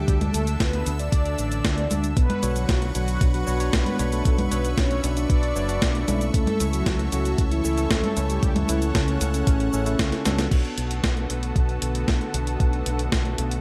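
Melodramatic and danceable, this italo disco excerpt sets a mellow, brassy synth melody with chorus and digital delay over a lush, detuned unison pad, a fingered electric bass with an envelope filter up front, a clean 12-bit drum machine with cabasa, congas, hi-hat, crash and gated-reverb snare, and a thumpy electronic kick, while a bell-like tine electric piano adds stabs from 2.4 seconds and a drum fill at 10.1 seconds leads into a new section.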